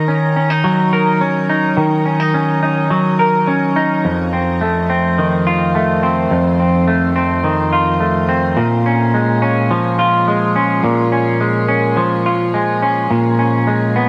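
Bathed in a moderate shimmer reverb with a long 5.6-second tail, this ethereal, melancholic dream pop fragment in Eb minor at 106 BPM features a lone semi-hollow electric guitar, clean, fingered and compressed, sitting up front with a hollow-body tone dressed in lush chorus and delay as it moves from Ebm7 to F7 at 4.0 seconds and Bbm7 at 8.6 seconds.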